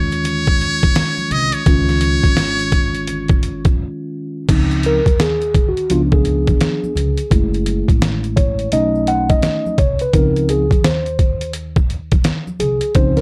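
A buzzy, metal-muted trumpet opens this cool jazz-hop excerpt in Db major at 85 BPM with a swung feel, over a mellow tine electric piano and woody pizzicato upright bass, as a gritty, pitched-down sampler-style drum kit with a thumpy kick and very quiet maracas and congas join; the trumpet's slapback-echoed line gives way to a short break at 3.8 seconds before the clean electric piano takes a solo from 4.5 seconds in a dark, lightly reverberant mix.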